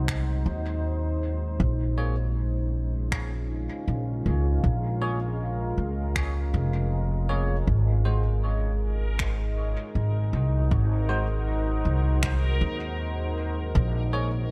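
A soft electronic kick and distant, roomy finger snaps with dub echo set a slow 79 BPM groove in 4/4 with a light 16th-note swing, while a woody, growly upright bass sits up front beneath a deep, moody pad of detuned sawtooth and sine voices holding sustained chords with chorus and built-in reverb. From 2.0 s a bell-like tine electric piano adds clean stabs wrapped in lush chorus and dub echo, and at 9.0 s a reversed, swelling granular texture appears, held on Bb4 with its own reverb. This hazy, meditative ambient dub in Bb minor moves between Ab7 and Bbm7 in a small room with light reverb, and it is cut from a longer piece.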